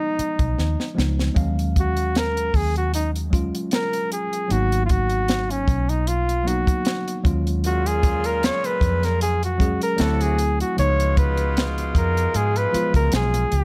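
A flugelhorn with a smooth top and light vibrato carries the melody up front, moving into a jazz-style solo at 1.4 seconds that runs to the end of this cut from a longer piece. The feel is lush 1970s-style soul, cinematic and smooth, with a gentle swing on the sixteenths. A worn, slightly out-of-tune tine electric piano plays mellow, clean accompaniment beneath it, while a dark, foam-muted fingered electric bass sounds round and amped. A compact, dry cocktail drum kit sits up front with a high-tuned snare, punchy kick and hi-hat, and it plays a fill just before the solo begins. A distant, roomy horn section adds tight jazz stabs from 7.6 seconds, as chords such as Ebm11, Abm7 and D9 pass through a small room ambience.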